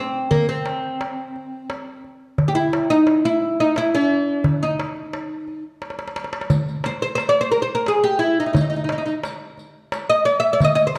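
Festive and passionate, this short excerpt of an Arabic maqam ensemble moves at 87 BPM in a straight 3/4, set in C maqam saba with tuning at A4 = 441 Hz. A woody, fretless oud with double strings and a plectrum-plucked attack carries the melody up front from Bb3 to E5, joined at 0.3 seconds by a crisp metal-shell darbuka, and a drum fill sounds from 5.8 to 6.5 seconds. At 6.5 seconds a soft-handed riq with bright jingles and a vintage, band-limited tone arrives in the background, all within a dark production and a recital hall's moderate reverb.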